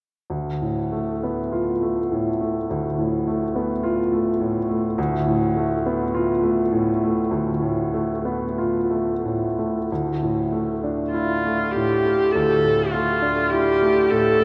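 The rhythm is loose and rubato, drifting in 4/4 at a slow 43 to 53 BPM, giving this hazy, wistful impressionist duo for viola and grand piano in D minor a floating, unhurried feel. A clear, natural grand piano opens at 0.3 seconds, laying an up-front accompaniment in its low and middle register over a Dm6 harmony. Around 9.9 seconds the music moves into a new section resting on Dsus2, and at 11.1 seconds a single bowed viola enters with the melody, rich in tone and expressive, shaded with vibrato and portamento. The viola sits up front yet carries a distant quality, standing a little louder than the piano. A long, wet cathedral reverb and a dark, warm production wrap the pair in a soft haze, and the recording is cut from a longer piece.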